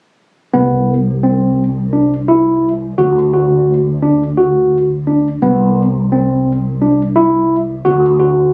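A barky, overdriven tine electric piano pushed through a combo amp spins gritty arpeggios up front from 0.5 to 8.5 seconds, alongside a growly, amped fretless electric bass coloured by ensemble chorus, in a bright, intricate progressive instrumental fragment in 7/8 at 172 BPM counted in eighths, shifting between Cmaj7 and D and captured on a phone in a small room with a club-style reverb.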